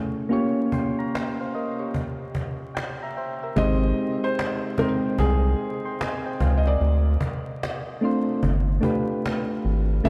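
A cosy, dreamy slice of lo-fi hip hop with a gentle swing, cut from a longer piece. Soft, warbling electric-piano-like synth keys open the recording with a chorused, low-pass filtered glow, joined at 0.3 seconds by a woody cajon with faint snares that sits distant, as if in a large room. The keys fill in briefly before the music shifts at 3.6 seconds, where a round, deep analog bass arrives up front, dark and sustained, alongside a felt-muted upright piano carrying the melody. That piano is intimate and thin-felted, with a short sustain, audible action noise and a diffuse ambient delay softening its edges. A moderate cathedral reverb soaks the mix, and vinyl crackle rides over the chords that drift from Abmaj7 through Dm7 to G9.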